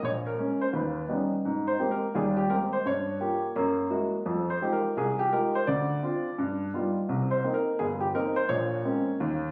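Captured on a phone in a club-like room with a short, wet reverb and compression, this sophisticated, playful jazz excerpt swings at 170 BPM in Ab major, with a warm, natural baby grand piano playing solo and up front from 0.0 to 9.5 seconds, ranging from G1 to D5 and moving through rich chords such as Bbm7, Ebaug7, Abmaj9, Gb9 and Fm9.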